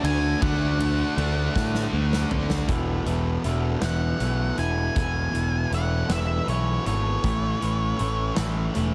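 A dark octave-fuzz lead guitar carries the melody of this bittersweet, anthemic quiet-loud alternative rock excerpt in E mixolydian, moving into a solo at 2.7 seconds over a slow 53 BPM 6/8 pulse as the chords shift from D to Esus4 to A. Beneath it, a bright, double-tracked fuzz guitar drives the riff up front, paired from the start with a high-gain heavy guitar that drops out at 2.7 seconds. A growling, overdriven picked bass sits up front, a huge, natural-sounding arena drum kit with a punchy kick plays a fill at 1.6 seconds, and from 2.7 seconds a lo-fi, slightly broken-up guitar through a small old amp plays delayed arpeggios in the background, all set in studio reverb with a heavily compressed radio sound.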